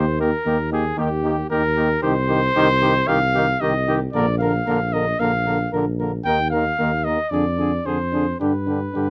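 A straight 4/4 pulse carries this short classical brass quintet passage, cut from a longer piece, in a heroic yet grave mood. The cornet leads the melody up front with a mellow, smooth-topped tone and light vibrato. Beneath it, a distant, roomy flugelhorn sings a second line, while the French horn and a bright trombone with vibrato add accompaniment from the background. The tuba anchors the bass up front, sharing the cornet's polish at its upper edge and touched with gentle vibrato. All five parts play throughout as the harmony moves from Eb through Cm, Bb and an open Eb fifth to a diminished chord over F before arriving on G. Close, detailed microphones keep each voice clear within light reverb.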